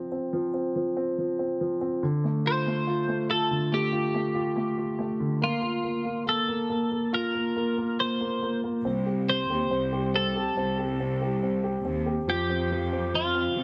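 The twelve-string electric guitar carries the melody from 2.5 seconds, its bright, clean picked tone shimmering through a lush chorus and sitting up front in the mix. This is a heartfelt, hopeful pop ballad at 70 BPM in 4/4 with a straight feel, in Bb major and tuned to A4 = 441 Hz. A warm, polished grand piano provides the accompaniment from the very start, present and up front as the chords move from F5 through Dm7, Bb5 and Cm to a closing Fsus2. At 8.9 seconds a rich studio cello section enters to take the bass line, its bowed ensemble sound focused and lush with vibrato. The parts sit on a moderate scoring stage reverb blended with a small room, giving the recording a spacious finish. This is a brief passage cut from a longer piece.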